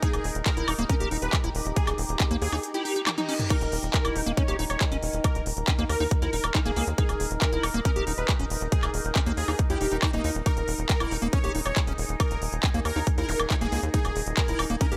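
Intense and hypnotic, this psychedelic trance excerpt layers a thick, detuned unison lead with phaser and delay over a squelchy, resonant liquid acid bass riff, a tight, nasal sequencer bass and a punchy, up-front electronic kick that drops out from 2.6 to 3.5 seconds while a very quiet reverse cymbal and zap enter and the big-room dance drum kit with crisp hats, handclaps, toms and woodblock plays a fill, all over a background drone of moving overtones and a cloudy, blurred granular pad in light reverb.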